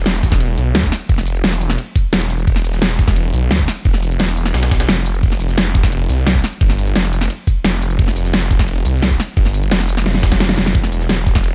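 The rhythm runs in straight 4/4 at 174 BPM, a dark, tense stretch of technical drum and bass in E phrygian, cut from a longer piece and tuned to A4 = 439 Hz. A snarling distorted saw bass, detuned and resonant with a moving notch, overdrive and distortion, growls up front between E1 and D2 from the very start. An electronic kick drum with a knocking, tape-warm sound sits forward in the mix alongside a dubstep drum kit whose huge snare, metallic hats and tambourine share the same studio ambience. Behind them, a breakbeat sampler-style kit adds a gritty, high-tuned snare and ride cymbal, both trimmed by high-pass filtering. The sound is fairly dry, with little reverb, and a drum fill lands at 10.1 seconds before the passage cuts off at 11.5 seconds.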